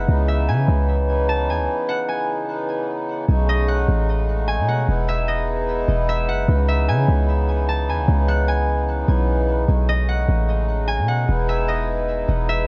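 Atmospheric cloud-rap hip hop in C# minor at 150 BPM with a half-time feel, hazy and ethereal, cut from a longer piece. A deep, boomy 808-style bass with a mellow decay sits up front beside a reedy, breathing hand-pumped harmonium holding sustained chords. A ringing, fingerpicked concert harp carries the melody through a digital delay over chords moving from C#m9 to B13 and Emaj7, with a break from 1.7 to 3.3 seconds. Light small-room reverb and worn, warbling cassette tape with drifting pitch give the mix a muffled, aged sheen.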